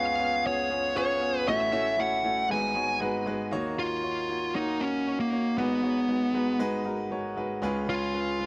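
A straight 4/4 pulse at 117 BPM drives this short, moody and dramatic pop cut in G# dorian. A dark, fuzz-laden electric lead guitar carries the melody from start to finish, its picked, compressed tone pushed through distortion and delay and placed up front. Beneath it, a clear concert grand piano supplies the accompaniment across the full 8.5 seconds, with a natural sound and deep bass sitting close to the listener. The harmony opens on C#7 and moves through A6 and G#m7 before a new section begins at 3.5 seconds on D#m7, then returns to G#m7 and C#7. A lush hall reverb with a 1.9-second tail surrounds the pair, lending the brief passage a spacious, theatrical air.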